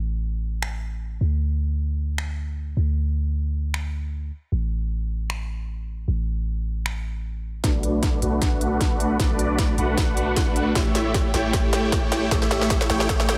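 Future bass at 154 BPM in 4/4 with a half-time, lightly swung feel, bright and lush, cut from a longer piece and tuned to A4 = 441 Hz. A deep, boomy 808-style bass with sidechain pumping opens alone, and from 0.6 seconds a trap kit joins with finger snaps, crisp filtered hats and a sharp snare set in studio reverb. At 7.6 seconds a build-up arrives: a huge, detuned supersaw riff pumps under a filter sweep over Bm7 then A7, joined by a punchy, layered electronic kick and a drum fill, all in light digital ambience.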